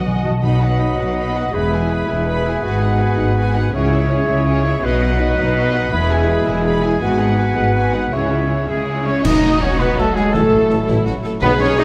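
Heroic adventure film score in a soaring 6/8 at 109 BPM, where dark, lush violins with portamento carry the melody over warm violas, rich cellos and double basses, while a hollow flute, a distant oboe and clarinet, very quiet woody second violins and mellow French horns fill out the build-up before bright cymbal swells from 7.0 s lead into a band accent at 9.2 s, where mellow trombones, a quiet tuba, snare drum and timpani join the orchestra in the scoring-stage reverb.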